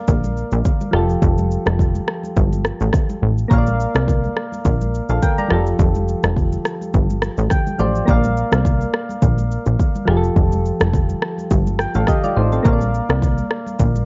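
A punchy, funky analog bass sits up front, its plucky sawtooth and pulse-wave tones snapping in quickly and decaying as the sound evolves across a breezy, joyful afrobeats groove with lightly swung sixteenths. Beside it, an electronic afro-pop kit drives the rhythm with a deep kick, rim clicks and shaker, also placed prominently. Soft, round electric-piano-like synth keys built from triangle and sine tones, with a sub octave, a filter sweep and a chorus shimmer, play a gentle, mellow accompaniment over two alternating chords, adding a short fill from 7.2 to 8.1 seconds. Vintage acoustic congas with thick skins and soft hands sit further back, their tone band-limited. The recording carries a worn, warbling cassette-tape character with drifting pitch and a dulled top end, and this short cut from a longer piece runs to 14.1 seconds.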